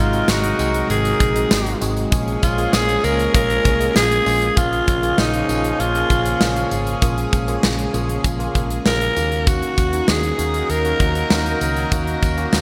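1980s-style pop with a nostalgic, urgent mood, carried by a breathy, raspy alto saxophone melody with vibrato, scooped notes and delay, sitting up front over a mellow, slightly out-of-tune tine electric piano with light overdrive. A clear but distant horn section punctuates with loose stabs, while a very quiet, shimmering string machine of violins holds sustained chords and a dark, foam-muted fingered electric bass provides a round, punchy low end. A polished modern drum kit with a tight kick and gated reverb enters at 0.1 seconds, joined by a faint, jingly tambourine, all set in a lush hall within a bright digital production.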